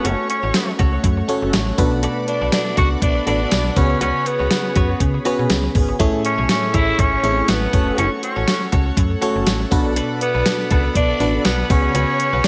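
Uplifting and romantic, this 1980s-style pop excerpt sets a breathy, raspy tenor saxophone melody with tape echo up front over a thumpy 12-bit drum machine with gated reverb, snappy slap-like FM bass, a glassy chorused FM electric piano, a shimmering pulse-width pad, bright direct-recorded clean electric guitar riffs, mellow synth brass stabs, a distant lush violin section and a jingly tambourine entering at 0.5 seconds, all moving through F#m, Bm7, C#7sus4 and Amaj7.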